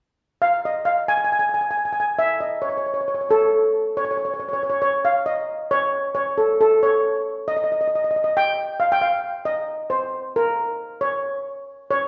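A lone steel pan enters at 0.4 seconds with a sunny, festive calypso tune in Db major, moving at a brisk 136 BPM in a straight 4/4. Struck with medium rubber sticks, the lead pan has a metallic, shimmering tone with a gentle warmth, and it sits up front in the mix with a boxy, small-room colour. Its melody stays within a compact span from A4 to Ab5. The opening phrase gives way to a new passage at 3.9 seconds, which carries the playing on until the pan stops at 12.1 seconds. A wet recital-hall reverb with a 1.3-second decay surrounds the instrument, lending this short excerpt from a longer piece the airy resonance of a church or concert hall.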